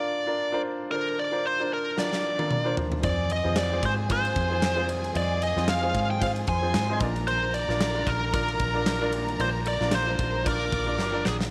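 Piano-driven pop, hopeful and uplifting at 113 BPM with a light 16th-note swing in Bb mixolydian, where a dark, distorted lead guitar with slapback echo carries the melody up front over clear, polished concert grand piano chords moving from Bb/D through Fm to Bb, a huge arena drum kit with punchy kick and bright cymbals enters on a fill at 2.0 seconds, a round, foam-muted vintage electric bass and a lush, bowed symphonic violin section join at 3.0 seconds, and light reverb rounds out this short cut from a longer piece.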